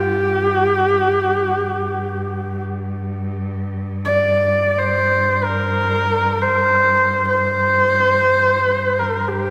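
In free time, this vast, solemn stretch of Mongolian folk music in G yu mode sets a husky, up-front horsehead fiddle, bowed with vibrato and expressive portamento between G4 and D5, over a clear, distant cello drone held smooth and even on G2, both playing for the full 9.5 seconds under a long, wet cathedral reverb of 5.2 seconds.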